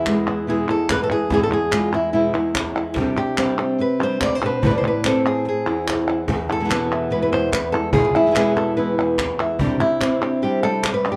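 A dark, warm production with a wet studio reverb frames this short, intense and mournful flamenco passage, cut from a longer piece and moving at 145 BPM in a straight 4/4. Up front, a fingerpicked acoustic flamenco guitar carries the melody across a range from E2 to E5, while a second fingerpicked guitar sits lower in the mix, playing stabs. Crisp palmas hand claps sound close, and a snappy cajon with snares, struck with hard hands, comes from a distant, large room. The harmony moves from E to Csus2 at 3.0 seconds and Amadd9 at 4.6 seconds, then returns to E and Csus2, giving the roughly 11-second stretch a brooding, unresolved pull.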